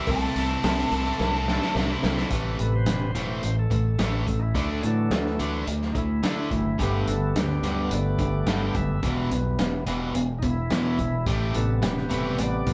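A gritty, swaggering classic rock excerpt opens with a dark, fuzzed-out lead guitar line that lasts only until 1.7 s, over a reedy tonewheel organ holding chords through a slow rotary speaker. Beneath it, two picked electric guitars play riffs: one bright and distorted, the other crunchy and very quiet. A growling, overdriven fingered bass and an up-front vintage drum kit with a muffled, lo-fi sound, tight kick and rolled-off top drive the straight beat, while a metallic cowbell sits in the background until 2.2 s. A drum fill leads into the organ solo at 2.3 s, where its key click and clean tone come forward as the chords move from Am7 through Dadd9, Gadd9 and Em back to Am7. The whole band sounds as if playing live together in a small room with modest reverb.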